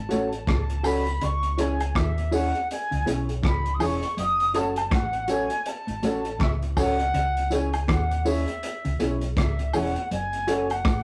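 Roots reggae with a hypnotic, meditative mood, this short cut from a longer piece rides a swung sixteenth-note feel over a slow alternation of F#m and C#m chords. A crunchy breakbeat kit sits up front, its punchy kick, hi-hat and rim click sounding gritty and saturated with a rolled-off top. Beneath it, a fingered electric bass lays down a round, amped low end, while a mellow electric guitar plays a dark, clean riff in its low register. A second mellow guitar adds compressed accompaniment in the background, and an upright piano contributes woody, slightly detuned stabs with audible action noise. Above them, a reedy silver concert flute carries the airy, tongued melody with vibrato from a distant position, and close tambourine and woodblock add acoustic color. The whole sits in a small room with moderate reverb, giving it the rough, saturated character of a rehearsal-room recording.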